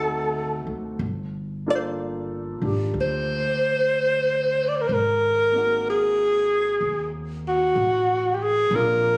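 A breathy, mellow alto saxophone sits up front with vibrato and a soft subtone, carrying the melody of this tender, intimate jazz ballad at a slow 62 BPM swing, while a natural-sounding grand piano comps quietly beneath and a woody, thumpy pizzicato upright bass anchors the low end through D7b9, Gm9 and Ab9 chords, all in a short cut from a longer piece captured on a phone in the room with light reverb.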